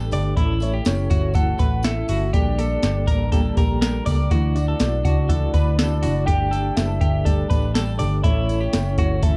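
A round, foam-muted vintage electric bass sits up front in this youthful, bright slice of jangly indie pop at 122 BPM, driven by a soft analog rhythm box with a deep kick, tonal snare and metallic hats, plus a very quiet, jingly tambourine. A clean, compressed twelve-string electric guitar rings out arpeggios through spring reverb, while a reedy electric piano with fast tremolo and a full-bodied fingerpicked acoustic guitar in the background fill out the harmony over A, Gmadd9, Dadd9 and Gsus2. From 0.6 s a soft, octave-layered synth lead with chorus and vibrato carries the melody, all set in a dark, warm production with light reverb.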